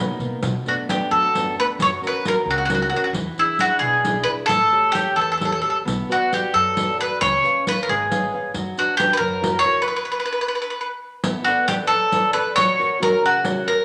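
A 6/8 pulse at 89 BPM, counted in dotted quarters and played with a rubato feel, carries this wistful, passionate Italian folk serenade in B minor, cut from a longer piece. The bowl-back mandolin sits up front with the melody, its bright, picked double strings ringing clearly. Beneath it, a full-bodied nylon-string guitar fingerpicks the accompaniment with audible finger squeak, while a woody pizzicato upright bass holds the low end until 9.6 seconds. A riq adds jingling percussion struck with hard hands, carrying a small-room character. The harmony moves through Bm7, F#, E7, A7 and C#7 before the music stops at 9.9 seconds, then the opening section returns at 11.2 seconds on Bm7 and F#, with a wet, large studio reverb around the ensemble.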